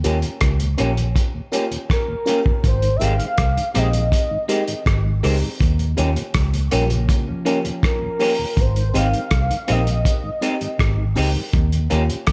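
Over a straight 81 BPM lovers rock groove in Ab major, a muffled, cloth-damped drum kit with tight kick, hi-hat and rim click sits up front beside a round, foam-muted fingered bass, while twangy, slightly broken-up guitar stabs with spring reverb punctuate the groove and a dreamy FM electric piano with chorus, phaser and tape echo and a very quiet slow-rotary tonewheel organ fill the background beneath a velvety, detuned synth lead that enters at 1.9 seconds, joined briefly by a dark, clean fingered guitar arpeggio from 6.7 to 8.4 seconds, as the chords sway between Eb7 and Abmaj7 in this romantic, smooth excerpt cut from a longer piece.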